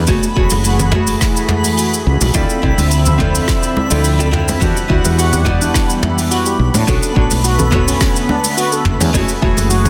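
Wistful and relaxed, this sunset chillout excerpt moves at 106 BPM in a straight 4/4, cycling through minor ninth chords from F#m9 through Dm9, Em9 and Bm9. A fingerpicked nylon-string guitar with an old-string, woody tone carries the accompaniment through a digital delay, while a lush, detuned sawtooth unison pad with chorus sustains the harmony beneath it. Underneath, a dark, growly fretless electric bass gives a round foundation, and a deep, layered electronic kick sits alongside a soft brush kit of cabasa, hi-hat, rim click and toms, with very quiet, close and dry congas adding a ringing touch. A bright, twinkling granular texture with an octave-up shimmer hovers in the background on a single high B5, bathed in its own reverb. At 4.6 seconds a mellow steel pan played with soft rubber sticks enters with arpeggios, its metallic sound echoed by a digital delay. The whole is set in a light small-room reverb and finished with a dense, heavily limited modern master.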